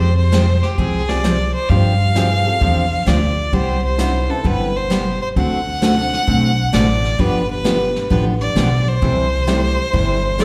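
A swung 131 BPM groove in 4/4 and C major drives this playful western swing fragment, where a clear, boxy fiddle with slapback echo carries the melody up front over a woody, thumpy pizzicato upright bass, a bright picked dreadnought acoustic guitar, brushed jazz drums sitting in the background from 0.3 s and a dark vintage upright piano from 1.1 s, until a mellow clarinet note with vibrato arrives at 10.4 s, the band heard like a live gig through the venue's PA with recital hall reverb.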